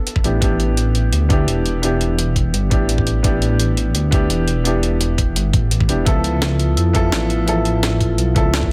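Set in a digital ambience, this dreamy, lush liquid drum and bass excerpt at 170 BPM pairs an up-front, boxy baby grand piano with audible action noise, carried through a low-pass filter sweep and tape echo, with a deep, beating detuned saw bass, a knocking layered electronic kick and a gritty, pitched-up jungle sampler-style kit of hi-hat and snare, while a mellow soft-mallet vibraphone with tape echo arrives at 6.1 s as the harmony moves from G69 to C#7alt.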